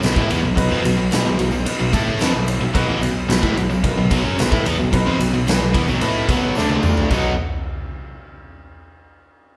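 A huge, punchy arena drum kit sits up front in this confident, sunny classic rock excerpt at 110 BPM in B major, driving crunchy overdriven and tight distorted double-tracked guitar riffs, a growling overdriven bass, a woody, brilliant upright piano and a faint, jingly tambourine through a band-in-one-room sound with large studio reverb, before a drum fill at 6.6 s leads into a new section at 7.1 s.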